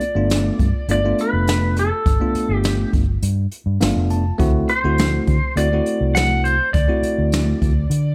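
A small room's light reverb frames this gritty, rollicking soul blues excerpt, played at 102 BPM with a straight-eighth feel, where a clean, twangy lap steel carries the melody up front with slide and volume swells. Beneath it, a bell-like tine electric piano comps over G9 moving to D9 at 4.4 seconds, just after its own short fill from 3.5 seconds. A brushed jazz kit with a boomy kick and a dark, round, foam-muted fingered bass entering at 0.2 seconds sit close and present beneath the melody.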